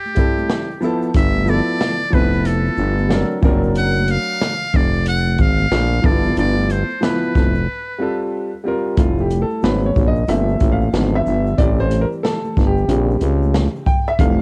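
A small-room home recording on cassette, this warm, smooth jazz-hop fragment swings on a dark, rolled-off open drum kit with a boomy kick, while very quiet, band-limited congas and egg shaker sit underneath. A buzzy, brilliant trumpet with a metal mute and light vibrato carries the melody until 8.3 seconds over a vintage concert grand piano with deep bass, and a growling, thick FM bass arrives up front at 1.1 seconds. From 9.0 seconds the piano takes a solo over a richly colored run of extended jazz chords.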